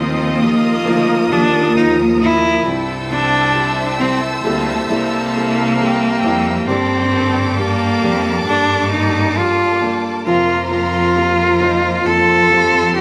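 Heartbroken and emotional, this slow G minor pop ballad at 67 BPM sets an up-front solo cello with vibrato singing the melody over a soft, felt-muted upright piano with audible action noise, a background violin section tracing a second line, distant, lush string-section chords, a very quiet picked steel-string acoustic guitar with finger squeak playing arpeggios, and a rich cello section carrying the bass, all in a moderate studio room as the chords move from Ebsus2 through C and Gm to Fsus4.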